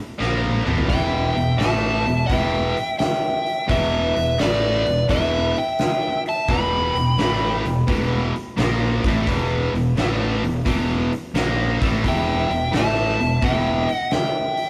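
Gritty and brooding, this short cut from a longer piece sits in blues rock power trio and southern rock territory, with a swung 4/4 feel. A drum fill opens at 0.2 seconds on a big acoustic kit, dark and smooth in a big room, with a fat snare, punchy kick, hi-hat and toms. From the same moment a bright, double-tracked distorted guitar sits up front playing a low picked riff, while a growly fuzz bass, fingered and overdriven, holds the bottom. At 0.9 seconds a biting lead guitar enters high and up front with a picked, overdriven melody, alongside a second, darker lead line through a small cranked amp that sounds lo-fi. The whole is a rough rehearsal-room recording with lossy compression artefacts and a moderate stone room reverb, sitting on an E minor chord throughout.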